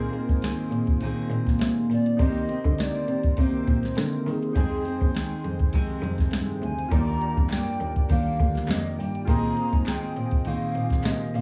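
Indie pop with a bedroom-pop haze, this short cut from a longer piece moves at 102 BPM in 4/4 with a light sixteenth-note swing, its mood nostalgic and sunny. A soft vintage rhythm box sits up front with a deep kick, crisp snare and metallic hats, while a bowed cello carries the bass line with smooth tone and light vibrato. A picked steel-string acoustic guitar, full-bodied with audible finger squeak, plays accompaniment, its pitch drifting slightly under a subtle chorus. Lo-fi synth keys add detuned, ring-modulated pulse and sawtooth tones with a fast, decaying attack and cassette-tape wear, and above them a warbling lead sings the melody with soft attack, vibrato, lush chorus and tape echo. A distant group handclap joins in the background at 7.5 seconds, and the harmony cycles through Bb9sus4, Cm7, Fm7 and Ebmaj7 in a dry, close-sounding room.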